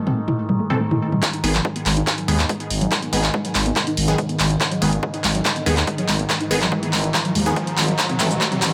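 A punchy analog drum machine sits up front from the opening moments, its handclaps, hi-hat, shaker and toms pumping against the sidechain in this driving, dark slice of peak-time techno. Beneath it, a woody, wave-folded pluck carries the riff through tube saturation, ensemble chorus and delay, while a ring-modulated drone with moving overtones hums low under chorus and its own reverb. A detuned supersaw stab, phased and low-pass filtered, hovers in the background. At 1.2 seconds an overdriven, layered electronic kick enters as the harmony shifts from Am to G#m, and a build-up with a drum fill and a filter sweep begins, soon joined by a growling, thick FM bass. A background riser arrives at 4.3 seconds and pushes toward a return to Am near the close, with a moderate plate reverb lending the whole mix a sense of space.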